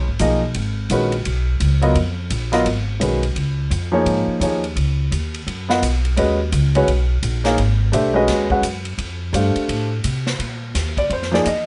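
Light reverb colours this short cut from a longer modal jazz piece, swinging at 171 BPM in Db mixolydian with a hypnotic, searching mood. The upright bass opens alone, its woody, thumpy pizzicato up front, before a natural-sounding baby grand piano with audible action noise joins at 0.2 s over Db7, Abm7 and F. An airy, polished drum kit with a hall sound sits further back on ride, hi-hat, medium-tuned snare and punchy kick, and at 10.4 s the harmony moves to Bbsus4 for a new passage.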